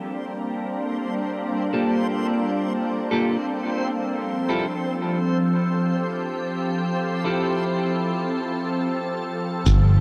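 Floating in free time, this meditative, spacious ambient dub passage opens on a soft, pure organ-like pad of sustained chords, thickened by ensemble chorus and under a filter sweep, while a reversed, dreamy, detuned granular texture hovers above, moving from Gm9 to Fmaj9 at 4.1 seconds. From 1.7 seconds a clean, twangy electric guitar adds picked stabs bathed in lush chorus and dub echo, all set within a moderate hall reverb. At 9.7 seconds a growly, punchy fingered electric bass arrives up front with a deep, dry electronic kick and a muffled, pitched-down shaker trailing dub echo in the background, just as this fragment of a longer piece cuts off.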